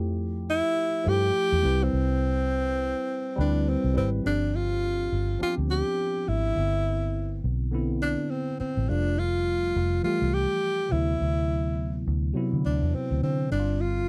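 A breathy, close-miked tenor saxophone carries the melody up front from 0.5 seconds, playing a jazz-style solo with light vibrato in this romantic, lush 1970s-style soul piece at 104 BPM in C major with a swung 16th-note feel. Beneath it, a worn, slightly out-of-tune tine electric piano with a barky, lightly overdriven tone and phaser supplies the chords through a combo amp, while a dark, round, foam-muted fingered electric bass sits forward in the mix. The dry, close studio sound keeps things intimate as the harmony moves from Fmaj9 and Cmaj7 into a second section at 4.2 seconds that passes through D13 and G7sus4.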